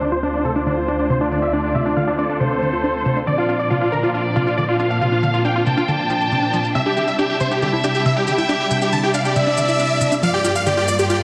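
A dense, heavily limited modern master bathed in lush hall reverb carries this soaring, bittersweet uplifting trance excerpt, where a huge, bright, detuned supersaw lead sings the melody up front through a filter sweep and delay, a clear, close studio violin section adds a second line, a rich symphonic string section holds bowed chords over Dm7, Bbadd9, Cadd9 and Gm7, a punchy sawtooth unison pluck runs filter-swept arpeggios, and an overdriven electronic shaker sits in the background.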